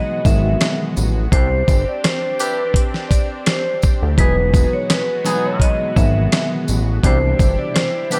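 Gritty, compressed sampler-style drums with a thumpy kick and fat snare sit up front in a light reverb, joined at 0.3 s by a thick, saturated analog bass and a jingly, distant tambourine in this soulful, confident boom-bap hip-hop excerpt at 84 BPM with a swung 16th feel. A dark, ringing vibraphone played with hard mallets carries the melody through delay, over a worn, slightly out-of-tune tine electric piano and a lush, warbling detuned pad moving between Emaj9, Cadd9 and Cmaj9. From 1.3 s, a veiled, cup-muted trumpet section adds tight stabs with light vibrato.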